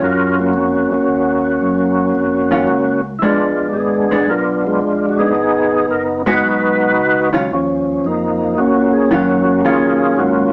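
Heard from further back in a reverberant room with a small-speaker sound, this bluesy, late-night soul jazz organ trio excerpt swings at 112 BPM in Eb minor: an up-front, full-bodied percussive tonewheel organ carries the lightly overdriven melody through a slow rotary speaker and chorus vibrato over a fat organ bass line, and at 2.5 seconds a dark, clean, picked hollow-body electric guitar joins with compressed accompaniment as the chords move through Ebm9, Bb7b9 and Abm7.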